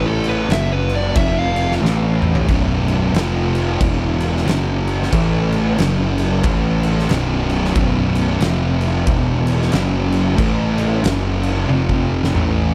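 A dark, compressed fuzz lead guitar opens this ominous stoner and doom metal excerpt, its distorted, tape-echoed melody ringing out over a double-tracked, up-front fuzz guitar riff and a growly, overdriven picked bass that sits bright and direct in the low end. The lead line is brief, falling away by 1.7 seconds, and an oversized, low-tuned acoustic drum kit with a boomy kick, fat snare and dark cymbals plays a fill that carries the music from its opening solo passage into the main section at 2.5 seconds. From there the sludgy riff and bass grind on together in a swung 4/4, with the drums sounding saturated and gritty in a big, pumping room, crash cymbals and toms filling out the heavy groove. The overall sound stays dry and close, with little reverb, and a second drum fill closes out the passage near its end. The chords move among F#5, F5, A5, B5 and E5, cycling back on themselves to give the piece a brooding, circular weight.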